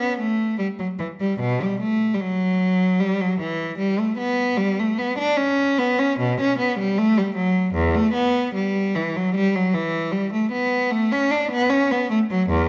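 A baroque-style classical suite movement for unaccompanied cello, this flowing, serene 12.7-second passage is cut from a longer piece and moves with an unhurried rubato in 4/4. A single bowed cello sits close and up front throughout, its rich, smooth tone shaped by vibrato and an even touch as it ranges from E2 up to D4. A moderate recital hall reverb gives the instrument a gentle halo, while a vinyl crackle lends the recording an aged, intimate patina.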